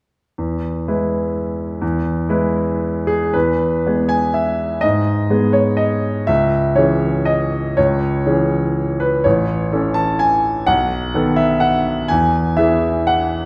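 A bright, brilliant grand piano sits up front in a recital hall whose reverb lends a wet, lingering bloom to every note. This is a short excerpt from a longer classical piece, a solo piano waltz in triple time that sways with a graceful, playful rubato. The piano carries the whole texture from 0.4 seconds to 13.5 seconds, ranging from deep bass notes up into a sparkling, open upper register. An opening phrase gives way at 3.3 seconds to a new section that wanders through minor shadings before turning toward a dominant seventh and coming home to the tonic chord. The elastic timing and the airy room give the dance a lilting charm.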